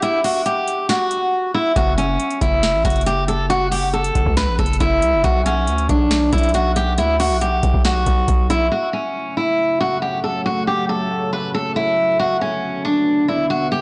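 Brooding and eerie, this half-time trap cut from a longer hip hop piece opens on a picked steel-string acoustic guitar that carries the melody up front, its tone filtered and trailed by tape echo. A booming analog drum machine supplies a deep kick, crisp snare and metallic hats, and it drops out briefly before a distorted 808-style bass arrives at 1.8 seconds, aggressive and heavy with a noisy edge under F#m and Bm chords. The drums and bass fall away near 8.7 seconds. The guitar then sits over a moody pad of detuned sawtooth voices that warbles with chorus and its own reverb, sustaining dark chords to the end. The recording sounds blown-out and overdriven, dusted with vinyl crackle, capped in the top end and set in a light reverb.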